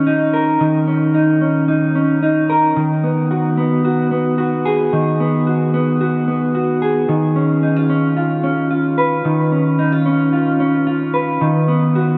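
A mellow, dark electric guitar plays alone and up front for the whole 12.2-second excerpt, its clean fingered tone carrying a subtle chorus and tape echo inside a huge, wet ambient reverb. This dream pop passage moves at 111 BPM in a straight 4/4, drifting from an Eb5 power chord through Abm7 and Db7 chords over an Eb bass. The mood is ethereal and melancholic.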